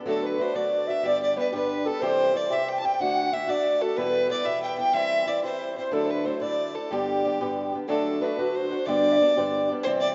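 A lively 6/8 jig at 122 BPM in dotted quarters, this rollicking Celtic folk passage in G major is cut from a longer piece and runs just over 10 seconds. A rich, biting fiddle carries the melody from 0.1 seconds, up front and close, its light vibrato and airy bow giving the single player an earthy edge. Alongside it a hollow wooden flute plays a second line, tongued and close-miked, with an airy, warm tone and vibrato. A dark, boxy fingerpicked acoustic guitar with old strings supplies a swing-style accompaniment, sitting up front with a woody tone as the chords move through D, G, C, Em and a Dadd9 before the opening phrase returns at 7.9 seconds. A lush hall reverb bathes the rough home-demo mix, and the top end is rolled off above 7.6 kHz, leaving a soft, slightly dull sheen.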